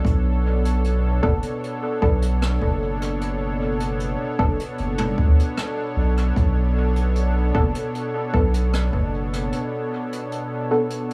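A punchy, layered electronic kick with small-room character and a natural jazz brush kit of hi-hat, rim click and toms trailing dub echo set a straight 76 BPM pulse in 4/4 for this spacious, hazy ambient dub excerpt in B minor, where a smooth, detuned sawtooth analog pad holds a sustained Bm7 with chorus, a deep, round sub bass sits up front, and muted, filter-plucked chord stabs with chorus and dub echo enter at 1.2 s, inside an echo-heavy mix that opens into a break at 9.5 s as the bass drops away.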